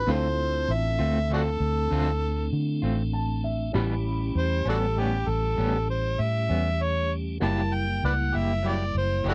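Laid-back and gritty, this slow 12/8 blues excerpt is led by an up-front overdriven harmonica solo, amplified and jazz-inflected, with light vibrato, tongue slaps and scooped notes, over a round, punchy, foam-muted fingered electric bass. A dark, boxy grand piano comps and adds a fill from 2.8 to 3.8 seconds, while a piping tonewheel organ with key click and slow rotary speaker holds sustained chords and a slightly broken-up electric guitar with tremolo fills in the accompaniment. The harmony moves from Dm7 to A9 to F#7b9, captured in a dry, close 1970s-style studio sound.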